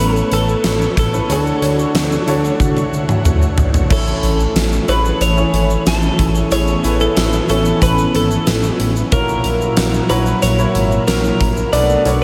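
A dreamy mix soaked in a huge ambient reverb with an eight-second tail gives this short excerpt of 1980s-style pop a nostalgic, romantic glow. At 92 BPM in a straight 4/4 in A major, a twelve-string electric guitar carries the melody with a bright, clean, twangy, compressed tone, colored by spring reverb and tape echo. Beneath it, a concert grand piano plays intimate, polished accompaniment with deep bass, long sustain and audible action noise under a subtle chorus. An organ-like ensemble string part holds soft, warbling vintage chords in the background, while a smooth, dark synth bass with a sawtooth and square-wave edge and a touch of ring modulation anchors the low end. A grainy egg shaker ticks quietly in the background, and a huge arena drum kit enters at 0.3 seconds with a punchy kick, fat snare, toms, tambourine and bright cymbals, up front in a hall sound. A drum fill from 2.6 to 3.9 seconds leads into a new passage, and the harmony moves from Aadd9 and Dmaj7 to Amaj7, then F#7/A# and Bm7.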